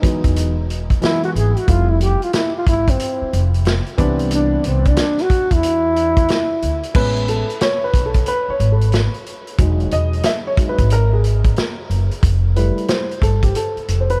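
A breathy, whispered trombone carries the melody in this relaxed, cool jazz-hop excerpt. It enters at 1.0 seconds with a soft attack, light vibrato and a touch of delay, sounding distant and roomy yet intimate. When it stops at 7.0 seconds, the mellow baby grand piano takes over with a solo, its smooth, vintage tone full of audible action noise. Underneath, a woody, growly upright bass with steel strings plays pizzicato up front. The vintage acoustic drum kit adds a punchy kick, a medium-tuned snare, hi-hat and dark crash cymbals with a rolled-off top, and the groove swings its sixteenths over major-ninth chords in a light studio reverb.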